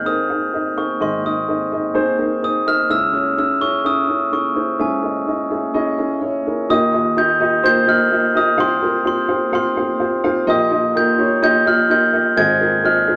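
A wet, close studio sound with a short room tail and a soft, rolled-off top end frames this warm, anthemic pop excerpt in Ab major at 127 BPM in a straight 4/4. A bell-like glockenspiel, struck with soft plastic mallets for a mellow, ringing tone, carries the melody up front in its high register, while a dark, woody upright piano supplies the accompaniment from deep bass to the middle range. Both play throughout, moving from Ab to Dbm before a second section at 6.7 s passes through Ebadd9 and Csus4 and settles on Ab6.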